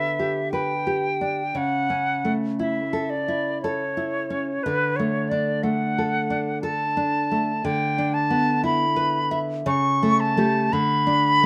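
A light reverb surrounds this close, intimate recording of a romantic duo for flute and classical guitar, cut from a longer piece. The mood is serene and lyrical, moving at a slow 59 BPM in 3/4 with a flexible, rubato feel. Up front, a silver concert flute carries the melody with an airy, bright metal tone, crisp attack and expressive vibrato, close-miked so every breath-touched phrase sits near the listener. Beside it, a nylon-string guitar, also up front, supplies fingerpicked accompaniment with a full-bodied, deep classical voice. The harmony drifts from Em7/D through A/C# and D to E5/D and A7/C#, then reaches a chordless N.C. moment at 10.7 seconds as both parts close the passage at 11.5 seconds.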